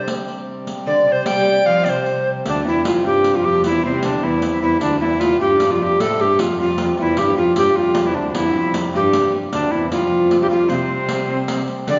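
Medieval dance in 6/8 at 102 BPM in C major, festive and rustic: this excerpt from a longer piece puts a breathy, chiffy tenor recorder with expressive vibrato up front on the melody, over a second line shared by a delicate fingerpicked gut-strung lute and a bowed, fretted viola da gamba with an airy, ringing tone, while a reedy, nasal hand-pumped harmonium drones in the background and a riq adds dark jingles under hard hands, the ensemble heard from further back in a reverberant recital hall with a muted top end as the music moves into a new section at 2.5 s.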